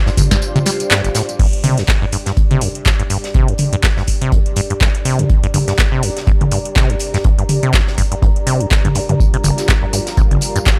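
A lush, vintage string machine and a moody, detuned ambient pad open this raw, gritty acid house excerpt, the strings holding sustained chords with phaser and ensemble chorus until 1.4 seconds and returning at 9.2. The pad's chorus and reverb sit darkly under the entire clip, and both parts pump with the sidechain alongside a rubbery, resonant sawtooth acid bass riff with tube saturation. Up front, a tape-warm electronic kick and a booming analog drum machine with crisp snare, metallic hats, handclaps, tambourine, toms and crash, both re-recorded in a large room, drive the swung groove, while a very quiet, high-tuned acoustic kit adds hi-hat and snare to a dry hardware recording.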